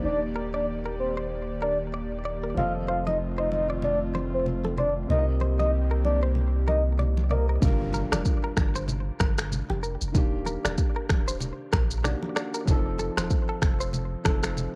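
A swung sixteenth-note afrobeats groove in 4/4 sways with a hypnotic, sultry feel, anchored from the start by a deep, punchy sine sub bass with a pitch-drop attack, joined almost at once by a bright, twangy clean electric guitar riff recorded direct with tape echo. A round, octave-layered synth lead carries the melody with chorus, tremolo and vibrato over a breathy, warbling pad and a dark, boxy grand piano with audible action noise, while bright, thin-skinned congas enter in the background at 2.6 s. Lead and pad stop by 7.6 s as an electronic afro-pop kit with a deep kick, rim click, finger snaps and shaker comes up front, a very quiet downlifter and impact mark the opening and that change, and the piece carries the vintage character of a home cassette recording in light digital ambience.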